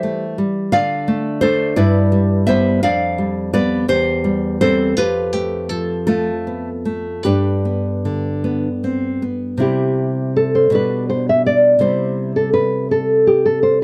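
Dry and close, with a light reverb, this recording has the intimate feel of a 1970s studio, both guitars sitting up front. It is a lyrical, serene romantic piece for two nylon-string guitars in C major, moving in a rubato 6/8 at roughly 50-58 BPM, counted in dotted quarters. One classical guitar carries the melody with a warm, thumb-plucked tone between D4 and E5. The second, bright and fingerpicked, supplies the accompaniment across a range from E2 to F5, and both play together throughout this excerpt. The harmony drifts through C/E, Dm and G, coloured by a G7/F and a G9/F, before a new section arrives at 9.6 seconds and settles through G/B back onto C by its close at 13.8 seconds.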